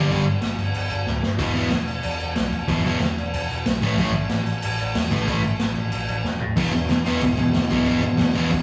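Two picked electric guitars and an overdriven picked bass open this energetic, rebellious punk rock excerpt, with a raw garage drum kit coming in almost at once. One guitar is bright, distorted and compressed, while the other is sludgy, overdriven and warm and sits up front; together they drive a riff through G5, E5 and A5 chords. The bass lies dark, round and amped beneath them. The drums are gritty and saturated, with a punchy kick, a medium-tuned snare, crash cymbal, toms and a rolled-off top. Short drum fills land at 1.1 s and 6.2 s, the second leading into a new section at 6.6 s that settles on E5. The recording has the rough character of a rehearsal room, with tube saturation and a moderate stone-room reverb.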